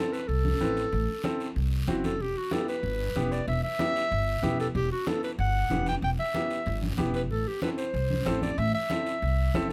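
Latin cumbia with a driving, passionate feel, cut from a longer piece, in which a clear, classical-style solo clarinet carries the melody up front over a woody, polished and present upright piano accompaniment. A thumpy pizzicato upright bass on gut strings sits up front alongside a raspy guiro in a live room and ringing, medium-tuned congas that sound distant in a large room, as the harmony moves from A minor to E minor and back to A minor at 7.3 seconds. The recording is close and detailed, with little reverb.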